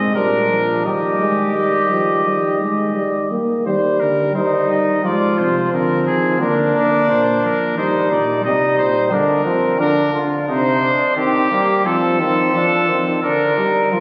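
A clear, up-front trumpet carries the melody of this joyful, stately classical brass canzona from the very start, alongside a punchy flugelhorn on the second line, a mellow euphonium accompaniment and a soft-attacked tuba bass. The imitative writing moves from a brief opening section into a longer one at 3.7 seconds, where the harmony passes through Fm/Ab, Bb/D, Cm and F, and the tuba stops at 9.1 seconds, leaving the three upper voices to continue. Captured on a phone in the room, the ensemble sits in a wet, lingering church reverb, and the passage is cut from a longer piece.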